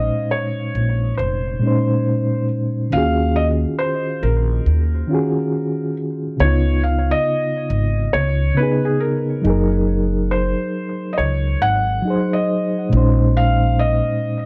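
A lazy 16th-note swing at 65% sets a slow 69 BPM in 4/4, giving this melancholic, nostalgic lo-fi hip hop passage in Eb dorian a loose, unhurried gait, tuned slightly low to A4 = 438 Hz. An acoustic upright bass, plucked pizzicato on steel strings, sits up front with a woody, dark tone in a low register and falls silent at 14.0 s. The mellow reed electric piano carries the accompaniment through built-in speakers, its reedy, clean voice shimmering with fast tremolo and softened by a low-pass filter and cassette tape colouring. Over it, a felt-muted upright piano sings the melody between Ab4 and Gb5: soft, intimate and vintage in character, with a thin-felt smoothness, a low-pass filter and an analog delay trailing its notes. The harmony drifts from Bbm11 through Ebm11, Db9 and Gb69 before returning to Bbm11 at 12.9 s, all within a single section cut from a longer piece. Light reverb and a cassette tape sheen over the whole mix lend a hazy, close-up feel, with both pianos playing until 14.5 s.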